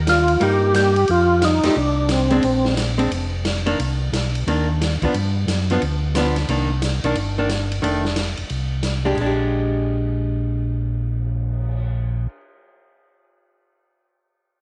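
A roomy echo-chamber reverb and a soft, rolled-off top give this swinging, soulful soul jazz organ trio excerpt a vintage studio glow. A gritty, overdriven tonewheel organ carries the melody up front with percussive second-harmonic attack, chorus vibrato and a slow rotary speaker, but it plays only from 0.1 to 2.7 seconds. Beneath it, a round, dark tonewheel organ holds down the bass line through the whole passage, also treated with chorus vibrato and slow rotary. A clean, compressed archtop guitar, picked on a hollow-body and miked through an amplifier, supplies accompaniment from 0.4 seconds, moving through changes such as Cm9, G7 and F13 before settling on Bb6. The acoustic drum kit sits further back, with dark cymbals, a medium-tuned snare, a punchy kick, hi-hat, ride, crash and a cymbal swell keeping the swing feel.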